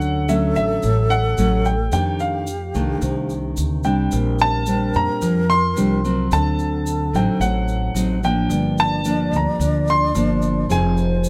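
An intimate baby grand piano, its action noise audible, carries the melody in this relaxed, sophisticated bossa nova excerpt at 109 BPM, joined by a breathy alto flute playing an expressive second line with vibrato, a fingerpicked nylon-string guitar with fresh strings, a woody, growly pizzicato upright bass, and a grainy, bright egg shaker set low beneath them, all captured close and dry as the harmony settles into Bb major at 4.1 s.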